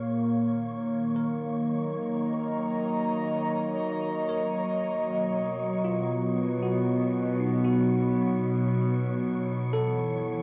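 A warbling, detuned tape-worn pad holds sustained chords up front through chorus, phaser and reverb in this serene, reflective ambient excerpt at 77 BPM in 3/4, while a bright, bell-like tine electric piano fades in with delayed arpeggios and a breathy, wind-like noise layer fades in up in the upper register, all drifting over Ebm, B and Em chords in a lo-fi home cassette recording with a wet room sound.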